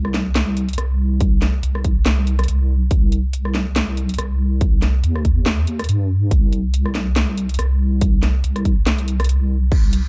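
A dark, dry production with little reverb frames this short cut from a longer deep dubstep piece, which sits in C minor at 141 BPM with a half-time feel and a light 16th-note swing. The mood is meditative and shadowy, and the whole clip plays as a drop. Up front, a deep, soft wobble bass holds the low end between C2 and G2, its triangle-and-sine tone sustained and compressed, with a fast attack and a chorus effect. A layered, electronic garage drum kit, re-recorded in a small room, supplies a cracking snare, rim clicks, crash cymbal and warm hi-hats from the start. At 1.2 seconds an up-front electronic kick drum joins with a punchy, tape-warm thump that carries until 9.8 seconds.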